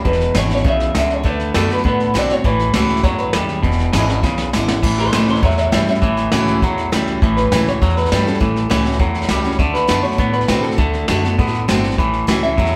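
A straight 4/4 at 201 BPM in A major powers this rowdy, upbeat rockabilly excerpt, where a full-bodied picked steel-string acoustic guitar and a clean, twangy electric riff with a warbly pitch drift sit over woody pizzicato upright bass and a dark, up-front brush drum kit with a punchy kick, while an electric guitar through a small old amp carries a slightly broken-up melody, all captured live in one room with moderate large-studio reverb, and a drum fill at 4.2 seconds launches a clean electric guitar solo from 4.8 seconds to the end.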